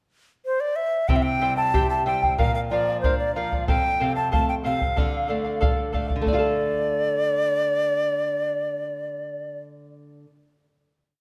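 Andean folk in D minor at 93 BPM in 2/4, this short, wistful and melancholic whole piece opens with an airy, up-front wooden quena entering at 0.5 s to sing a motif-based melody with vibrato and a soft attack, joined at 1.1 s by a shimmering double-strung charango in fingerpicked and strummed open chord shapes, a fresh-stringed nylon-string guitar playing bass notes and chord figures, and a deep, dark bombo repeating a pattern until 6.6 s, all moving from C through Bb and F to D minor before a final chord within a moderate concert hall reverb.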